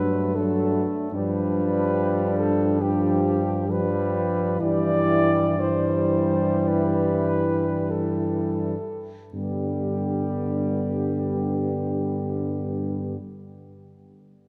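In a rubato 4/4 that slows through its first 9.3 seconds, this lyrical, hymn-like classical passage for brass band sets a mellow, up-front flugelhorn melody with light vibrato over a French horn section carrying a second line in the background, a clear, tight, vintage-toned trombone section and a smooth-topped solo trombone in the accompaniment, and a distant, roomy tuba bass, the ensemble resting in a moderate church reverb before settling on a G chord at 9.3 seconds.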